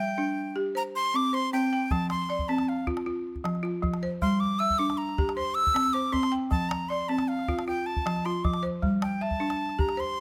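A breathy, bright flute carries a joyful, flowing melody over buzzing, woody balafon arpeggios in this West African traditional piece in F major, moving at 104 BPM in a straight 12/8. A deep, dry calabash joins at 1.9 seconds, while the flute's crisp, reedy tone and the balafon's dark mallet sound stay up front. Close, detailed microphones and light reverb keep the sound intimate in this short cut from a longer piece.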